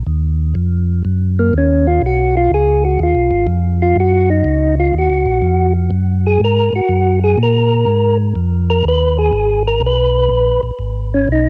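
A percussive tonewheel organ with a dark, percussive third-harmonic attack carries the melody from 1.4 seconds over a mellow, round tonewheel organ bass line with vibrato and key click, both up front on slow rotary speaker, the lead with a cassette-tape tint, in a bluesy, soulful soul jazz organ trio cut from a longer piece, swinging at 123 BPM in Eb minor through Ebm, Abm and Ebm7 chords in a lightly reverberant home cassette recording.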